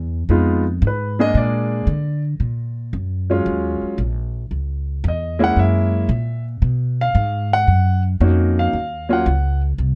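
Jazz piano trio with a smoky, late-night mood and a firm swing feel, cut from a longer piece. An up-front upright bass, plucked and woody with a thumpy steel-string tone, sounds from the opening moment, and a smooth, vintage-toned grand piano enters at 0.3 seconds to carry a solo over a progression that moves from Fm7b5 and Bb7 through Ebm11, Gb7 and Bmaj9 before settling on Ebm9. The close, detailed recording has little reverb, so both instruments feel intimate and present.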